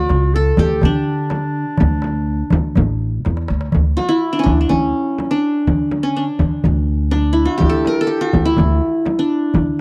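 A qanun leads with a bright-edged, fingerpicked melody over woody, thumpy pizzicato upright bass, both up front, while a clarinet adds a classical second line that stops at 3.2 seconds, giving this stately, festive Arabic maqam ensemble piece in 4/4 its opening color. From the very start, a small clay darbuka sits in the background beside a deep, close frame drum, both struck with hard hands, and a drum fill from 3.2 to 3.7 seconds carries the music into its second section. The sound is a dry, close studio recording in the manner of the 1970s with a small room ambience, cut from a longer piece.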